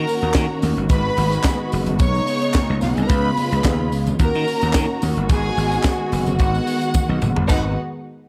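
Driving and glamorous, this short disco cut from a longer piece moves at 109 BPM in a straight 4/4, set in G# dorian over a chord cycle that runs D#m7, G#m7, B69 and C#7 before returning to D#m7. A gritty slap bass sits up front, electric and overdriven with a growly, punchy bite, while a tight funk drum kit from a small room drives the groove with a high-tuned snare, tight kick, hi-hat, handclaps, toms and china cymbal. A dark, woody string section holds lush sustained chords with a smooth top and vibrato, and above it a rich violin section carries a bowed, expressive second line close to the listener. Ringing, high-tuned congas played with hard hands sit very quiet in a live room, and a jingly tambourine stays close, dry and in the background. The drums close the passage with a fill from 6.9 to 7.5 seconds, all within light reverb and studio ambience.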